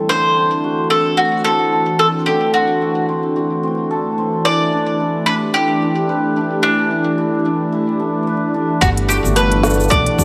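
Playful and pastoral, this folktronica excerpt pairs a picked bowl-back mandolin melody with delay over shimmering hammered dulcimer arpeggios through a low-pass filter and a smooth, detuned sawtooth pad with chorus, until at 8.8 seconds a growly pizzicato upright bass, a tight electronic kick and a kit of woody snare, crisp hats and shaker arrive, all within echo-chamber reverb and vinyl crackle.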